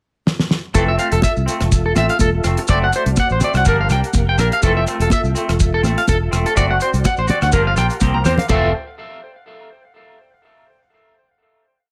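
Lightly reverberant and sunny, this carefree highlife guitar band piece in F major at 124 BPM opens with a dry, fat-snared damped 70s drum kit fill from 0.3 s; from 0.7 s a round, up-front fingered electric bass riff, a twangy clean electric guitar strumming upper chord shapes with subtle chorus, a slightly broken-up electric guitar playing sixteenth-note arpeggios in threes through tape echo, high-tuned congas and grainy maracas, joined at 0.8 s by a smooth tonewheel organ pad with key click and slow rotary speaker, carry a swinging Fmaj7, D7/F# and Gm7 groove to a final chord at 8.5 s.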